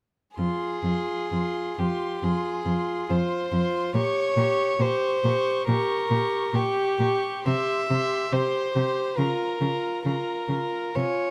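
Close, detailed microphones and a light reverb give this classical excerpt an intimate, finely etched sound. It is a slow, romantic string quartet movement in an elegiac, yearning mood, with uneven beats and a flexible rubato feel. All four players enter together at 0.4 seconds, each bowing softly over the fingerboard. The first violin carries the high melody with light vibrato and an airy, breathy tone, though it sits noticeably quieter than its partners. The second violin floats a pure, smooth second line up front. The viola adds a lush, gentle accompaniment in a narrow middle range. The cello anchors the bass up front with a rich, pure tone, stopping at 11.0 seconds just before the others finish at 11.3 seconds, as the harmony moves from F minor through a diminished chord and C major to B-flat minor over D-flat.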